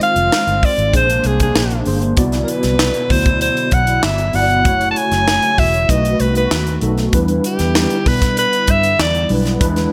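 A breathy, whispered alto saxophone carries the melody up front from the first moment of this glossy, urban 1980s jazz-funk pop excerpt at 97 BPM. It sits over a mellow tine electric piano with ensemble chorus, a hollow, flute-like pad with chorus in the background, and a crisp fusion drum kit with a punchy kick, high-tuned snare and gated reverb. A dark, round, foam-muted fingered electric bass enters at 0.2 s, the saxophone's vibrato and soft attack lend an intimate jazz feel, and the harmony moves from Fm7 through Bb9 and Cmaj9#11 to F#m7, B7 and Em7 within a light studio reverb.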